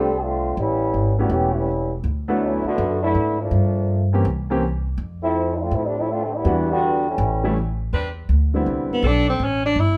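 A cup-muted trombone section, veiled and mellow with light vibrato, plays the second line of this brassy, dramatic big band swing at 163 BPM over a short-sustained baby grand piano and a woody, dark pizzicato upright bass; then a saxophone section enters at 7.9 seconds with smooth-topped sustained chords, and a subtoned tenor saxophone with soft attack and scooped notes takes the melody at 8.9 seconds in a lightly reverberant room.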